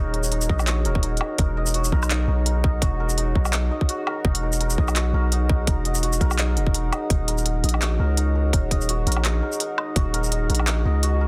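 A dry, dense and heavily limited mix carries this tense, cinematic stretch of half-time drum and bass, cut from a longer piece, with a lightly swung groove and a drop that restarts at 7.1 seconds as the harmony moves from Ebm to E and back. A moody, detuned analog pad with a moving notch and sub octave pumps under sampler grit and chorus, while a bright, shimmering santur rings out delayed arpeggios alongside it. Up front, a deep, sine-toned 808-style bass with tube saturation anchors an overdriven organic electronic kit of handclaps, smooth hi-hat, shaker and woodblock, joined at 0.5 seconds by a tight, layered electronic kick.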